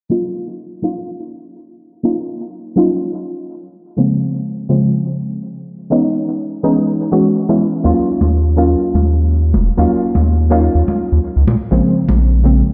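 Deep house in Eb minor at 124 BPM, with a light 16th-note swing and a smooth, moody feel, this excerpt is cut from a longer piece. A deep, mellow chord stab carries the whole passage from 0.1 to 12.7 seconds, its soft, evolving tone thickened by chorus, cassette tape color and tape echo while a filter sweep runs across it, moving through Ebm9, Bbm9 and Dbm9, returning to Ebm9 and then closing on Bbm9. At 7.8 seconds a round analog bass arrives up front, dark and sustained with a fast attack. Congas follow at 8.2 seconds, bright and acoustic in a small room, played with soft hands and sitting low in the balance. The mix sounds as if played on a big sound system in a bare room, bathed in a lush hall reverb and softened by a low-pass filter.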